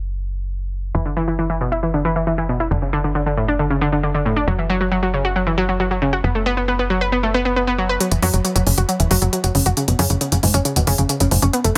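Uplifting trance with a soaring, driving mood, cut from a longer piece, opens on a tight, punchy sequencer bass with a nasal sawtooth bite, joined at 0.9 seconds by a round, warbling analog pluck playing arpeggios up front, coloured by chorus and dub echo over chords pedalling on F#. A filter sweep shapes the first 8.0 seconds, and then smooth, layered electronic hi-hats enter up front as a build-up begins. The dense, heavily limited modern master is dry, with little reverb.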